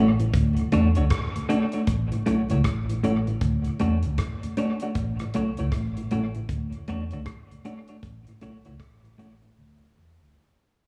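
A swung sixteenth-note lilt in 4/4 carries this laid-back, sunny roots reggae clip, heard as a live gig through a venue PA with club reverb and vinyl crackle: a round, foam-muted fingered bass and a dry, tight-kicked 70s drum kit of hi-hat, kick and rim click with tape echo sit up front beside a clean, compressed electric guitar with tape and slapback echo, while a mellow, lightly overdriven tonewheel organ with chorus vibrato and slow rotary speaker hovers in the background over alternating Dmaj7 and A6 chords, the recording fading out throughout until a break at 9.6 seconds settles on Dsus2.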